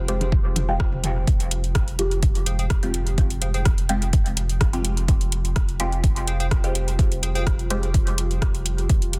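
A straight 4/4 groove, driven by a deep, up-front kick and a tape-warm deep house kit of metallic hi-hats and rim clicks, anchors this hazy, meditative dub techno excerpt, where a smooth sine sub bass pumps under a muted, detuned, phased dub chord stab and a moody, chorused ambient pad in the background, while electronic congas and toms flicker through dub echo from 0.2 to 1.1 seconds and a crisp, bright wavetable chord riff joins between 2.5 and 7.5 seconds in a dense, dry, heavily limited mix.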